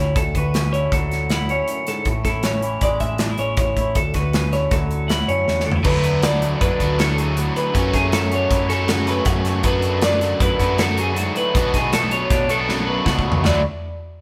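Bright, compressed twelve-string electric guitar arpeggios, glistening with spring reverb, lead this playful, wistful math rock and midwest emo excerpt in 5/4 at 158 BPM in D lydian. Beneath them sit a clean, fingered twangy electric guitar, a dark, round hollow-body short-scale bass and an up-front studio drum kit with a punchy kick, medium-tuned snare and bright cymbals, moving through chords such as Dmaj9, Amaj7 and F#m7. After a drum fill at 5.5 seconds, a warm, double-tracked overdriven guitar riff enters at 5.8 seconds, and the whole band plays live in one stone room with a moderate reverb.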